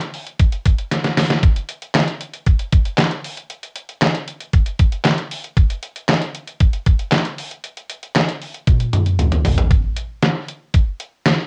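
A detuned 8-bit digital drum machine carries this upbeat, bright pop excerpt on its own, its thumpy kick, medium-tuned snare, handclaps, hi-hat and toms sitting up front with a cassette-tape grit and the sampler-style character of a pattern re-recorded in a small room. The straight 4/4 groove is broken by drum fills at 0.9 and 8.7 seconds, the second leading into a new section at 9.7 seconds. Moderate studio reverb and the home cassette recording give the short cut a lo-fi, homemade feel.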